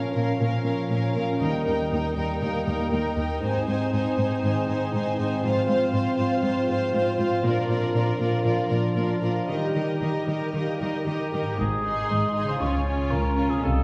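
Heard from further back in a wet scoring-stage space, this adventurous, soaring cinematic cue in Ab major at 119 BPM builds over its first 11.6 seconds through Bbm, Eb, Ab, Fm/Ab and Bb. Lush bowed violins carry a smooth, even melody high above a focused second violin line, expressive vibrato violas and a dark cello bass, while mellow, roomy French horns sustain chords and a concert harp plays ringing arpeggios in the background. Near the close, a distant solo cor anglais adds a second line from 11.1 s, and an up-front chamber double bass section enters at 11.6 s as the harmony moves to Ab and Db.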